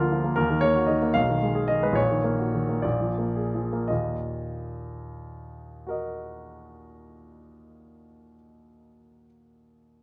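Romantic classical character piece for solo grand piano, stormy and passionate in a rubato 6/8, its warm, polished tone sitting up front in a moderate recital-hall reverb as the opening phrase slows through minor harmonies to a dominant seventh and back home at 3.9 seconds before a new section begins in this brief excerpt cut from a longer work.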